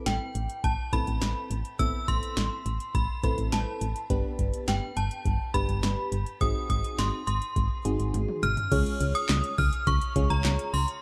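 Wistful yet bright, this synth-pop excerpt sets an up-front, chiming, inharmonic synth chime melody with ensemble chorus and shimmer reverb over a mellow, warbling FM electric piano bathed in phaser and shimmer reverb, a round, dark FM bass, and an overdriven electro analog drum machine with a deep kick, punchy snare, metallic hi-hats, handclaps, crash cymbal and toms, whose fill at 8.1 s leads into a new section on a Db chord at 8.7 s, inside a dark, warm production with moderate studio reverb.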